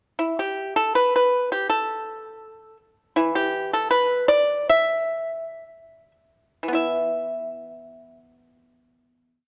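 Chinese traditional solo music for plucked strings: a brief, longing and contemplative piece in the E yu mode, in a rubato 2/4 that moves between 49 and 84 BPM, tuned to A4 = 441 Hz. A solo pipa, played with fingerpicks and placed up front, spans E3 to E5 with a dry, percussive tone, carrying an ornamented modal melody over low-string accompaniment. The pace slows from 3.2 seconds until a final chord arrives at 6.8 seconds, all within moderate recital hall reverb and a dark, warm production.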